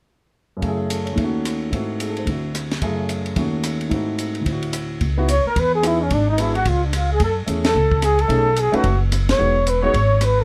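Cool and late-night, this brisk small-group swing and bop excerpt opens with an up-front grand piano and a compact cocktail drum kit, its dark, smooth sound built on a high-tuned snare, punchy kick, ride cymbal, hi-hat and rim clicks, moving through rich minor and altered chords. At 5.0 seconds a woody pizzicato upright bass enters, and from 5.3 seconds a breathy, whispered flugelhorn carries the melody with vibrato and scooped notes, shadowed by a very quiet mellow trumpet on a second line. The close, detailed miking and dry sound keep it intimate, with band accents landing at 7.6 and 9.3 seconds.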